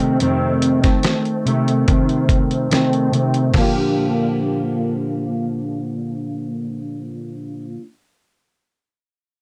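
Dreamy and sunny, this short cut from a longer indie pop and bedroom pop piece moves at an easy 72 BPM in a straight 4/4, centred on Bb major and tuned slightly below standard pitch. A fingerpicked, plugged-in steel-string acoustic guitar carries the accompaniment up front, its jumbo body sounding warm and full while an ensemble chorus, vibrato and a low-pass filter soften its edges. A filter sweep colours the guitar through the opening 3.5 seconds over an F7 chord before the harmony settles onto Bb6. A dusty, sampler-style soul drum kit sits alongside it, gritty and compressed with a thumpy kick, medium-tuned snare, hi-hat and crash, and stops at 3.7 seconds while the guitar continues to 7.9 seconds. The sound is dry and close in the manner of a 1970s studio, touched with light reverb.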